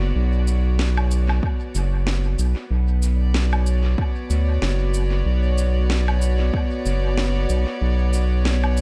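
A hazy digital ambience surrounds this deep ambient dub excerpt in B minor at 94 BPM with a 16th-note swing: a round, wave-folded analog bass with tube saturation sits up front from the start beneath sustained, reedy chamber strings with light vibrato and a gut-string tone, while a tape-warm electronic shaker, woody snare and woodblock, soaked in dub echo, arrive at 0.5 seconds, and an overdriven deep kick plays between 1.4 and 6.7 seconds over a steady B minor chord.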